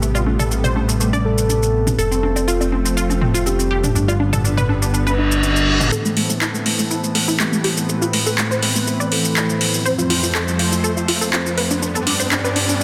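A soft octave-layered synth lead carries a dark, round melody in the background of an expansive, bittersweet progressive house cut at 122 BPM in A minor, over a lush unison pad, a punchy wave-folded unison pluck playing arpeggios through tape echo, a fat detuned analog bass, an overdriven deep house drum kit with metallic hats, handclaps and shaker, and tape-warm electronic bongos, congas and toms, while the harmony cycles Amadd9, F and G; from 5.1 s a reverse cymbal and riser rise in the background, and at 5.9 s the bass and hand percussion stop as a build-up begins with a filter sweep on the pluck.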